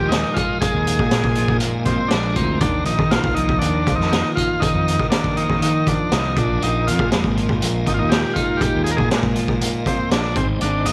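This hazy, trippy psychedelic rock excerpt opens with a buzzy vintage combo organ carrying the melody up front, its slight vibrato trailed by a slapback echo, while a piping tonewheel organ holds sustained chords in the background through a slow rotary speaker, light overdrive, chorus vibrato and audible key click. A raw garage drum kit joins at 0.1 s and sits up front with a gritty, saturated small-room sound, a high-tuned snare, a boomy kick and hi-hat, and a rolled-off top. Beneath it, a fingered electric bass growls with round, dark fuzz, and a bright, clean twelve-string electric guitar plays a picked riff further back, double-tracked and swirling through a phaser. At a straight 120 BPM in 4/4 and set in Bb mixolydian, the harmony moves from Bb7sus4 to Ebsus2 at 2.6 s, returns to Bb7sus4, and turns to Abmaj7 at 10.4 s just before the clip ends. Light reverb wraps the parts in a loose, dreamy space.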